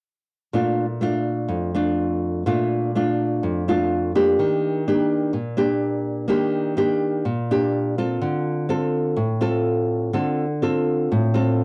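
A warm, full-bodied nylon-string guitar plays alone and up front in this romantic, breezy bossa nova excerpt in Bb major at 125 BPM, fingerpicked in a classical style through Bbmaj7, Ebmaj7 and Dm7 chords, with a cassette-tape character and a short, wet studio ambience that give it the intimate feel of a home recording.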